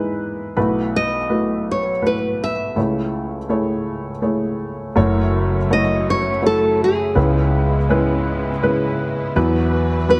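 Tender and heartfelt, this acoustic folk-pop ballad excerpt moves at an unhurried 82 BPM in 3/4, opening on a woody, slightly detuned upright piano with audible action noise, joined at 1.0 seconds by a dark, full-bodied fingerpicked nylon-string guitar carrying the melody up front with slapback echo and plate reverb. At 5.0 seconds the harmony shifts toward F#m7 and C#m7 as a veiled, con sordino string section adds soft-attack sustained chords with vibrato, and a round, foam-muted electric bass brings a punchy low end. The light room reverb keeps the whole intimate and close before it rests on an Esus2 chord.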